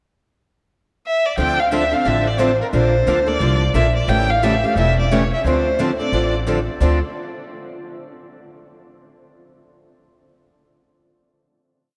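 Swinging at 177 BPM in D minor, this brief, virtuosic jazz manouche piece opens with an expressive, distant-sounding bowed violin at 1.1 s carrying a hook-driven melody with vibrato, portamento and slapback echo, joined at 1.4 s by a bright, picked steel-string guitar playing four to the bar with short accents on two and four, a boxy second swing guitar with finger squeak set further back, and a woody, thumpy gut-string upright bass playing a two-beat root-and-fifth line with walk-ups, all within a vast, echoing cathedral reverb before settling on a final chord at 6.8 s.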